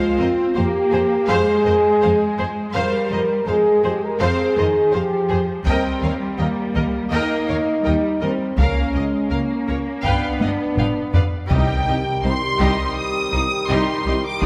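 Soaked in the wet reverb of a scoring stage, this epic, dramatic orchestral film-score excerpt in F minor moves at 82 BPM. A lush, distant violin section carries the melody over a focused second violin line, intense violas, smooth bowed cellos and focused bowed double basses, while up-front French horns hold warm sustained chords. Taiko drums struck with hard sticks enter at 5.7 seconds and play a fill into the closing section at 11.5 seconds, where a vintage-toned trombone section, a very quiet, roomy tuba and round soft-mallet timpani join as the harmony passes through G7 to C minor.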